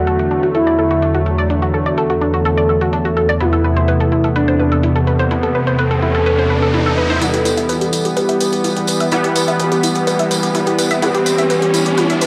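Melodic techno in E minor at 126 BPM, this melancholic, hypnotic excerpt opens with a smooth, expressive synth lead carrying the melody with vibrato and tape echo over a warbling, detuned pad and a chorused analog pluck arpeggio with 12-bit sampler grit, while an edgy sync-sweep polysynth adds nasal, up-front stabs and a quiet, filtered analog drum machine taps out hi-hat and toms. Filter sweeps move through the arpeggio and pad as the chords shift from D/E to Amadd9/E, and a riser enters at 5.1 s. At 7.2 s the harmony settles on Em for a build-up with a drum fill, a jingly, close tambourine joins, and a round, deep analog bass slips in very quietly, all set in a lush hall reverb with gritty cassette-tape colour.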